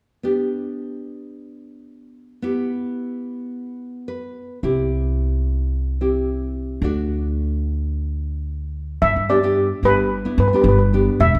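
A dark, full-bodied fingerpicked nylon-string guitar opens this bouncy, festive calypso excerpt at 109 BPM in G major, moving through G, Em, C and D with a light swing and adding a short fill at 3.8 s. A woody, growly pizzicato upright bass joins at 4.6 s, and at 9.0 s a shimmering, metallic steel pan, played with rubber sticks, takes the melody up front as the harmony returns to G. All three parts sit close in a moderate concert hall reverb.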